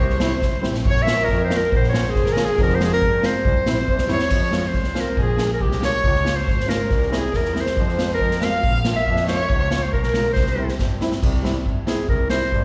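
A clear, up-front clarinet leads this festive, soulful klezmer excerpt over a smooth-topped bowed violin with vibrato and portamento in the background and an intense, distant bowed double bass, while an airy, polished street-band drum kit with a boomy kick, medium-tuned snare and dark cymbals adds several fills and an acoustic, thumb-plucked flamenco guitar accompanies in the reverb of a church or concert hall, until the violin stops at 10.8 seconds and the clarinet takes a solo from 11.2 seconds.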